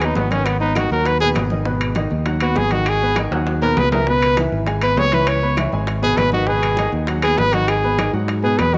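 Bathed in a moderate plate reverb, this fiery, sultry Afro-Cuban jazz excerpt puts a forceful, present trumpet solo with light vibrato up front over a clear grand piano and a dark, round, punchy fingered electric bass, while ringing metal-shelled timbales and bright, thin-skinned congas sit in the background, very quiet low-tuned bongos and woody claves add color, a drum fill breaks in at 3.3 s, and the chords move from G#m7 to C#m7 and back.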